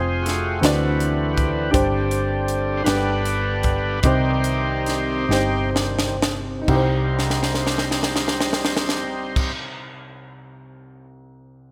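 Bright, polished 1980s-style digital production with a moderate plate reverb frames this solemn, soulful slow gospel passage in 6/8, cut from a longer piece. A gritty, overdriven tonewheel organ on a slow rotary speaker sits up front and takes a solo over its sustained chords through the first 6.7 seconds as the music slows down, joined by a woody, slightly detuned upright piano with audible action noise and a round, hollow-body electric bass. A crisp fusion drum kit, with a punchy kick, high-tuned snare and dark cymbals, plays fills on either side of the move into a new section, and after the organ and bass stop at 9.5 seconds, the piano carries on to 11.7.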